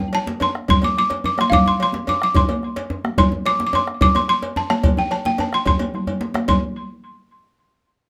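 A woody, buzzing balafon melody opens this short cut from a longer West African drum ensemble piece, sitting up front and riding the high range from F5 to D6 with a touch of tape echo. Djembe enters with it at once, deep and warm, and within a fraction of a second the bombo, congas and cowbell join, building a driving, powerful groove at 145 BPM in a straight 12/8. The bombo gives a dark, close and dry low end, while the high-tuned congas sound brilliant and thin-skinned, softly played and set further back in a larger space. The cowbell cuts through with a metallic, compressed and saturated edge, though it sits lowest in the mix. A drum fill from 5.9 to 6.5 seconds pushes the music into a new section, and all five parts stop at 6.6 seconds inside a moderate small-room ambience.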